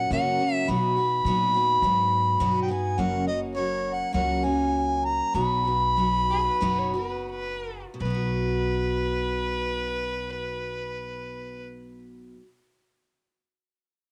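Sunny and down-home, this short excerpt from a longer honky-tonk and classic country piece moves in a straight 4/4 at 83-104 BPM in B major, easing back in tempo between 3.0 and 8.0 seconds. A mellow harmonica carries the melody up front from the start, its soft attack, scooped notes and smooth top giving the line a jazz-tinged, solo character before it drops out at 7.3 seconds. Beneath it, a bright, full-bodied picked steel-string acoustic guitar plays the accompaniment, with audible finger squeak, while a woody, thumpy pizzicato upright bass anchors the low end. At 6.3 seconds a clear, earthy fiddle enters as a second line, bowed by one player with light vibrato. The harmony moves between F# and B, and the guitar, harmonica and fiddle carry a cassette tape character, with an analog delay on the harmonica, all set in a small room with light reverb that gives it the intimate feel of a home recording.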